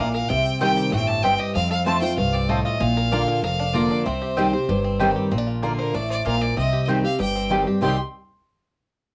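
A driving, lonesome bluegrass excerpt at 191 BPM in C dorian opens with a biting, distant bowed fiddle and a twangy, fingerpicked banjo set in the background carrying the melody, while an up-front picked steel-string acoustic guitar with finger squeak and a woody mandolin playing double-string stabs, both with a cassette-tape tint, ride over a thumpy pizzicato upright bass through Cm, F and Bb in a small room on a home cassette recording.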